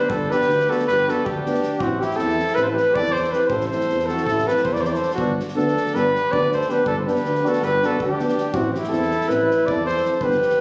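A dark, punchy trumpet leads from the very start, carrying the melody up front with light vibrato and a smooth top, while a soft-attacked flugelhorn plays a second line beneath it. This is an exuberant, wild Balkan brass band piece in 9/8, driven at 321 BPM in eighths with a straight feel, and it is cut from a longer piece. Two euphoniums supply accompaniment, one distant and roomy with light vibrato and very quiet, the other close-miked yet sitting in the background, and a mellow tuba holds the bass from 0.1 s. A natural acoustic drum kit with a tight kick and medium-tuned snare keeps a low-level pulse, sounding like a small room. The harmony moves between G and Am, and the whole band is placed in a moderate recital hall reverb, captured on a phone in the room. The euphoniums and tuba stop at about 10.4 s, while the trumpet, flugelhorn and drums run through to about 10.6 s.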